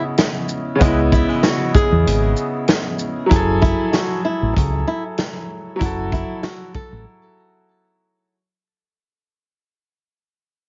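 A swung boom-bap hip-hop groove at 96 BPM in 4/4 drives this dark, moody excerpt in F# dorian, cut from a longer piece and moving from C#m9 to F#m9 at 3.3 seconds. A vintage drum kit with a punchy kick, medium-tuned snare, hi-hat and shaker sits up front with 12-bit sampler grit and a rolled-off top, while a deep dub fingered electric bass, round and dark, enters at 0.8 seconds. A bright grand piano with brilliant, long-sustaining chords carries the accompaniment throughout, and a fingerpicked flamenco guitar plays the melody with audible finger squeak, touched by digital delay. A very quiet, mellow horn section with light vibrato adds a brief jazz-style stab at the same moment the bass arrives. Breaks open up the groove, and the whole track fades out across its second half, heard through a heavily compressed, radio-like sound with vinyl crackle and little reverb.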